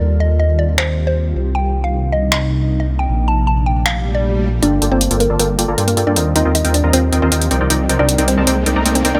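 Light reverb gives this future bass excerpt a soft, hazy sheen, and its half-time feel makes the mood dreamy and bittersweet. A woody, round, mallet-like synth pluck carries the melody from the start, its mellow FM tone coloured by chorus, phaser and delay. Beneath it, an ethereal, airy pad holds sustained chords in the background with a slow attack and long release. A thick, detuned saw bass sits up front with a lush chorus. At 0.8 seconds a layered, big-room dance drum kit enters up front, with finger snaps and metallic hats softened by low-pass filtering, and a background swell and riser arrives at 4.0 seconds. From 4.6 seconds the section turns into a build-up as a punchy, bright supersaw stab plays a riff through an evolving filter sweep, over chords that move from Gm9 through Eb6/9 to Cm9.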